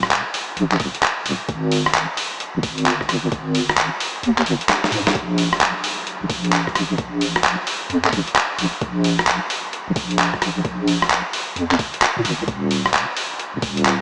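An up-front, sampler-style drum kit leads this soulful, bouncy two-step UK garage fragment, its handclaps, hi-hat, rim click and medium-tuned snare sounding gritty, compressed, pitched down and tape-warm, with a swung sixteenth-note feel. A thumpy electronic kick, equally gritty and pitched down, enters at 0.8 seconds, drops out at 4.2 seconds, and returns at 5.2 seconds as a drum fill leads it back in. Underneath, a deep, soft wobble bass blends square and sine tones into a dark, detuned, sustained sound with a fast attack and a chorus shimmer. The whole mix is soaked in a huge ambient reverb that gives it a dreamy haze, yet it comes across through a small-speaker sound.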